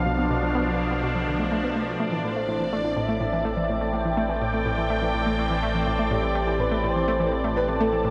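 A sweeping resonant pad sits up front, its airy, evolving sawtooth chords slowly swelling through a chorus across this 8.1-second excerpt of ambient, sequencer-driven space music in A minor at 124 BPM, with a straight 4/4 feel. Beneath it a deep sine sub bass adds round weight with tube saturation, while a breathy, wind-like tuned noise texture fades in from the background under its own reverb. From 0.1 seconds an analog pluck plays a detuned, ring-modulated riff with a snappy attack, carried by chorus and delay and shaped by a filter sweep. At 2.2 seconds a shimmering, retro pulse-width lead enters with a dark, vibrato-laced melody, doubled by a sub octave and treated with chorus and delay. The harmony moves from Bdim to Am7 at 2.0 seconds, and a vast reverb with a 7.5-second tail bathes the mix, creating an expansive, hypnotic mood.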